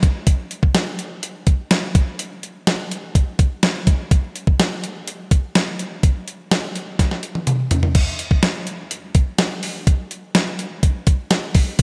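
Bright, 1980s-style digital production sets a clean 12-bit drum machine up front in a lush hall reverb, giving this short pop excerpt in straight 4/4 a romantic, glossy feel. The sampler-style kit pairs a thumpy kick and fat snare with hi-hat, crash cymbal and toms, its tape-tinged tone carrying a trace of a small room. A drum fill from 7.0 to 8.0 seconds leads into a new section that runs until the cut at 11.8 seconds.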